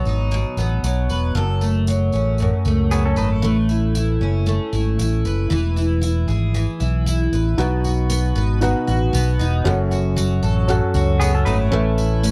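A dry, close studio sound in a 1970s style frames this easy-going, heartfelt stretch of acoustic pop, cut from a longer piece and moving at 116 BPM in 4/4 with a light sixteenth-note swing. A full-bodied, double-tracked jumbo steel-string guitar, picked and up front, carries the accompaniment beside a round, amped fingered electric bass, while a jingly tambourine sits low in the mix. A clean, twangy pedal steel played with fingerpicks adds brief compressed slide phrases as a second line, first at 2.9 seconds and again near the end at 11.2 seconds. At 7.6 seconds a soft, felt-muted upright piano joins with a mellow, intimate tone as a new section begins. The chords move through B, F#m, Aadd9 and E before circling back to B.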